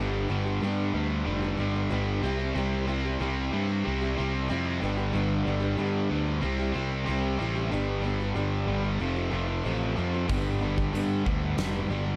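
A bright, double-tracked overdriven stack guitar riff, an up-front fuzz-driven picked bass and a boxy archtop acoustic picking arpeggios with audible finger squeak open this cathartic, anthemic quiet-loud alternative rock passage in G mixolydian at 93 BPM, moving through G, C and F in a small, moderately reverberant room, until a huge arena drum kit with a fat snare and punchy kick bursts in at 10.3 s.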